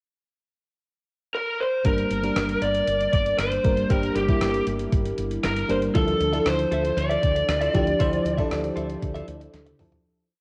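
A cranked, overdriven lead guitar with a lo-fi cassette grit opens this moody, dramatic 1980s-style pop piece, playing an up-front motif-based melody over a pickup bar before the full band arrives at 1.8 s. A thumpy, sampler-style drum machine with a big backbeat, a round, dark fretless bass driving steady eighth notes, and a lush, dreamy FM electric piano with a soft pad layer and chorus pushing the chords all sit in a roomy hall reverb. A clean, compressed funk-style rhythm guitar slips into the background at 5.9 s, and the whole short piece fades out through a closing drum fill.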